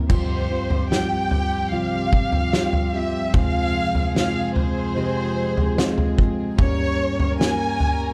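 A clean tine electric piano and a reedy, gut-toned string section holding sustained chords in the background open this longing, melancholic pop ballad excerpt at 74 BPM, moving through Csus4, Fm and Gdim. From 0.1 s a lush, expressive violin section carries the melody with vibrato, while a full-bodied jumbo acoustic guitar fingerpicks arpeggios through delay further back. A loose, roomy indie drum kit sits up front with a punchy kick, fat snare and dark cymbals, and the production has a dark, warm studio feel.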